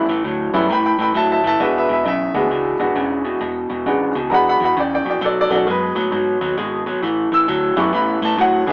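Electric blues shuffle with a soulful, laid-back swing, this short excerpt cut from a longer piece sets a woody, polished upright piano up front in accompaniment beside a twangy, slightly broken-up electric guitar riff through a small old amp, while a dark, round, foam-muted electric bass sits low beneath them, all captured as a band playing live in one room with moderate reverb and a small-speaker sound as the chords move from A7sus2 through E9 and B7 to A9.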